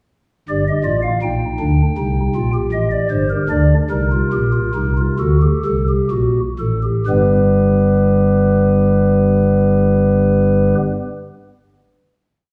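In a straight 4/4 pulse that moves between 59 and 82 BPM and slows down until 9.1 seconds, this driving and serious baroque-style fugue for solo pipe organ weaves three-part imitative counterpoint on soft, hollow stopped-flute stops with a mellow chiff, ranging from G1 to G5 through a Gm, Cm, Gm and D7 exposition before settling on a final G chord at 7.1 seconds, the organ up front yet heard from further back in a reverberant recital hall.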